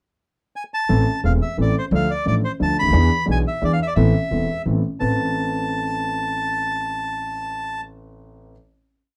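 A 3/4 waltz pulse with the accent on one, pushed and pulled in rubato at 175 BPM, drives this short, tense and melancholic tango in A harmonic minor, moving from a brief pickup through Am, Dm and E7 before settling on a lingering Amadd9 at 4.0 seconds. A reedy, airy bandoneon sits up front with a motif-based melody in period phrases, while a concert grand piano, intimate, smooth and vintage with deep bass and audible action noise, carries the accompaniment and a woody pizzicato upright bass on steel strings anchors the low end until 5.1 seconds. The sound is a dry, close 1970s-style studio recording with little reverb.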